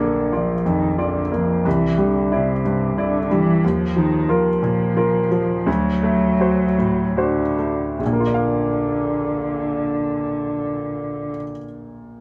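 A clear, intimate grand piano, its action noise audible, and a single veiled, muted cello bowing a second line with light vibrato and portamento open together in this tender, hopeful neoclassical excerpt in a rubato 3/4, slowing from 2.6 to 8.0 seconds in a wet studio room before the cello drops out at 11.3 seconds and the piano carries on alone to 12.2 seconds.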